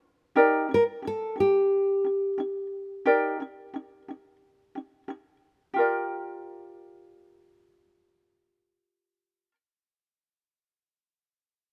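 A straight 4/4 pulse at 89 BPM carries this reflective, tender pop fragment in G minor, cut from a longer piece, with an up-front, thumb-plucked ukulele laying a light, warm accompaniment over Ebmaj7 from 0.4 seconds. A bright, fingerpicked nylon-string guitar with a classical touch sings a short, close-set melody from 0.7 to 5.1 seconds, and after it falls away the harmony moves to Gm7 at 5.8 seconds. Light reverb softens the intimate sound.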